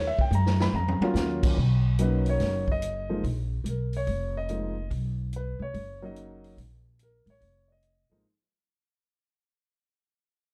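Woody, thumpy pizzicato upright bass sits up front in this smoky, moody jazz piano trio excerpt, its gut strings sounding from F1 to Gb2 at a swinging 144 BPM in 4/4. An intimate grand piano carries the melody from F3 to Cb6, close and natural, with its action noise audible beneath the notes. The drum kit plays in a swinging big-band style with a medium-tuned snare, boomy kick, hi-hat, crash cymbal and toms, and it enters just after the start, playing a fill from 0.3 to 1.2 seconds. The harmony moves from Ebm9 to alternating Bmaj7 and Bbsus4 chords, tuned to A4 = 444 Hz. Light reverb and a dark, warm production give the trio a late-night haze, and a fade-out begins at 1.6 seconds and runs to the end of this fragment cut from a longer piece.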